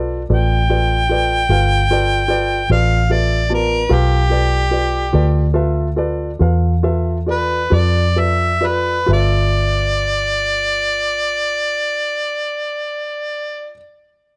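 A laid-back, swaggering slow blues in a straight 12/8 feel, this brief excerpt from a longer piece rests on a G9 chord before shifting to G13 at 9.1 seconds. A vintage muted electric bass, played with the fingers, sits up front with a dark, round, foam-muted tone. The clear harmonica carries the solo melody from 0.3 seconds, overdriven and jazz-inflected, full of vibrato, tongue slaps and scooped notes. Beneath it, a grand piano gives intimate accompaniment with short sustain, its action noise audible and a plate reverb around it. The tempo slows between 2.3 and 9.1 seconds, and a light reverb gives the small group a close, relaxed feel.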